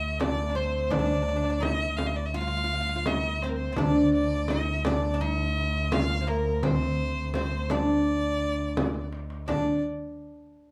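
This Arabic maqam ensemble excerpt in D maqam saba moves at 84 BPM in a straight 4/4, tuned to A4 = 439 Hz, with a warm, stately mood. A clear, bowed violin carries the melody up front with smooth, even vibrato. Beneath it, a bright, woody fretless oud with double strings plays a second line with a plectrum, and a rich bowed double bass holds a drone on D2. At 0.2 s the percussion enters: a deep, large frame drum struck with hard hands in a live room, and a small, high clay darbuka with natural skin sitting in the background. A drum fill at 8.8 s leads into a new section, all heard through the wet small-room ambience of a rough home demo mix.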